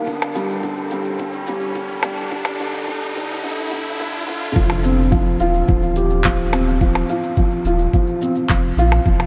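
A felt-muted upright piano leads this moving, melancholic piano-and-strings electronica fragment, its soft, boxy, thick-felt tone sitting up front as it plays a riff from D3 to G4 through a delay. At 107 BPM in a straight 4/4, a compressed, pitched-down kick with a muffled thump carries the beat, joined by electronic shaker, percussion blips and handclaps that sound re-recorded in a small room. For the first 4.6 seconds an electronic riser and a filter sweep build tension over a Dsus4 chord. At 4.6 seconds the drop arrives as the harmony moves to Fsus2 and a round sine sub bass enters between Eb1 and Bb1, pumping under sidechain compression. A huge ambient reverb with a long tail and a high-pass filter give the mix a dreamy, soaked atmosphere.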